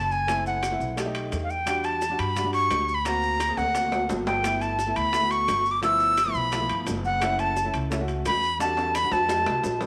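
Lively and sophisticated, this Afro-Cuban jazz excerpt moves at a brisk 173 BPM in straight 4/4, cut from a longer piece. A breathy, bright flute carries the melody up front, its tongued, reedy tone colored by vibrato, while a grand piano supplies warm, natural accompaniment beneath it. An upright bass played pizzicato gives a dark, thumpy, gut-string pulse in the low register. The percussion gathers quickly: grainy maracas sit distant in the background from 0.1 seconds, ringing metal-shell timbales and round, low-tuned bongos join at 0.3 seconds, and close, dry claves add a quiet woody click. Drum fills mark the passage around 3.6 seconds and again at its close, and the harmony winds through extended and altered chords such as F#m7b5, G69 and Em9 before landing on F7. A moderate echo-chamber reverb lends the ensemble a sense of shared space.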